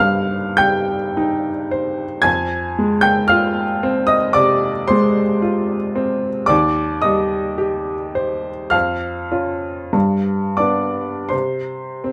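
A clear, woody upright piano sits up front in an intimate studio space with moderate reverb, its action noise audible beneath the notes. This mournful, wistful romantic nocturne in C minor moves with free rubato at a slow 41-58 BPM in 4/4, and the solo piano spans Eb2 to Ab6. Cut from a longer piece, the passage moves from Cm through Fm, Cm/Eb, Db/F and G before arriving on C5 at 11.3 seconds.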